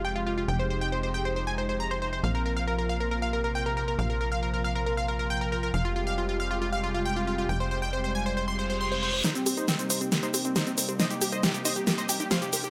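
Uplifting trance in a soaring, euphoric mood, where a punchy, detuned supersaw stab carries the melody through a low-pass filter and digital delay over a lush, thick unison pad with chorus and phaser and a tight, nasal sequencer bass that stops at 9.2 s, just after a quiet reverse cymbal and riser rise into a build-up with a layered big-room drum kit featuring a huge snare, a round analog pluck arpeggio with dub echo in the background, and filter sweeps on both the supersaw and the pluck.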